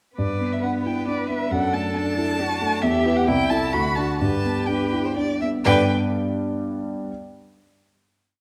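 In a 3/4 at 122 to 136 BPM with a free, rubato feel, this short, spirited and graceful classical-period piano quartet movement in G major opens at 0.2 seconds and begins slowing down at 2.2 seconds. One violin sings the melody up front with vibrato and expressive portamento, while a second, more focused violin adds sustained chords in the tune's rhythm and answers at phrase ends, and a soft-attacked cello weaves a counter-melody with sustained chords. A dark, intimate baby grand piano with audible action noise ripples beneath the rich strings and carries the final chord on to 7.1 seconds, all heard in a reverberant recital hall.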